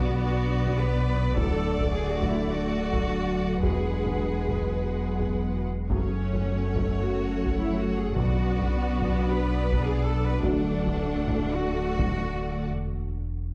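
Bowed strings, a deep sine sub bass and a glassy, ethereal FM pad with ensemble chorus and its own reverb open this brooding, relentless hybrid orchestral and electronic film cue at 106 BPM. A lush violin section holds the melody on F#5 in the background, while a rich chamber violin section carries a second line above clear, focused violas and cellos and a woody double bass section. A smooth-topped French horn section enters at 0.2 s with sustained chords, and a distant, very quiet taiko ensemble played with hard sticks follows at 0.7 s, as the harmony moves through Bm, D, Eadd9 and F#m in a dark production with scoring-stage reverb, until the ensemble breaks off at 12.7 s and the sub bass sustains alone to 13.5 s.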